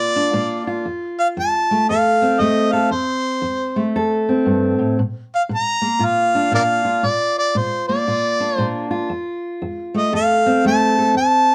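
Acoustic country blues with a soulful, gritty mood, swinging at 116 BPM in F major, this brief cut from a longer piece features a warm, up-front harmonica singing the jazz-tinged lead with light vibrato, tongue slaps, scooped notes and a smooth top, over a dark, fingerpicked steel-string acoustic guitar that carries the accompaniment through Bb and F chords, all in a shadowy production touched with light reverb.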